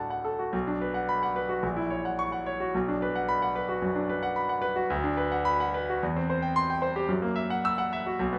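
This romantic classical character piece for solo piano is bittersweet and stormy, unfolding in 4/4 with a flexible rubato feel. The concert grand carries everything alone from 0.0 to 8.4 seconds, ranging from a deep bass low in the keyboard up to a brilliant upper register. Its tone is polished and up front, with a short sustain that keeps each chord clearly defined. The harmony moves restlessly through minor and dominant-seventh colours, arriving on F#7 at 7.1 seconds. A moderate recital hall reverb surrounds the instrument, and the passage is a short cut from a longer work.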